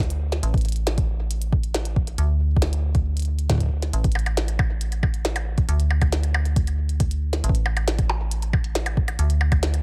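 Wistful and intricate, this short IDM excerpt at 137 BPM in straight 4/4 pairs a metallic, fast-attack FM bass ranging from A1 to D2, its decaying notes gritty with tube saturation and held up front, with a glitchy kit of clicky hats, percussion blips and a tiny snare trailed by analog delay, while a deep, tape-toned electronic kick enters at 0.5 seconds, all set in a digital ambience.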